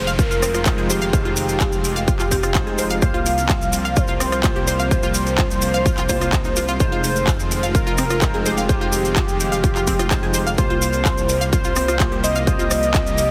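Driving and expansive, this progressive house excerpt moves at 127 BPM in a straight 4/4 in F minor, cycling between Fm7 and C7sus4. A velvety, full-bodied synth lead carries the melody with chorus, delay and vibrato, while a lush supersaw pad holds sustained chords in the background, pumping against the sidechain. A felt-muted upright piano adds soft, intimate stabs with audible action noise and delay, and a tight sequenced synth with a filtered pluck spins driving arpeggios from 0.1 to 13.0 seconds. Underneath, a dark, rumbling detuned saw bass pumps beneath a punchy, up-front electronic kick, joined by a tape-warm dance kit with crisp hats, handclaps and rim clicks plus grainy, close maracas. A very quiet downlifter sweeps through the opening 3.0 seconds, and the whole mix sits in light reverb with a heavily compressed, radio-like sheen.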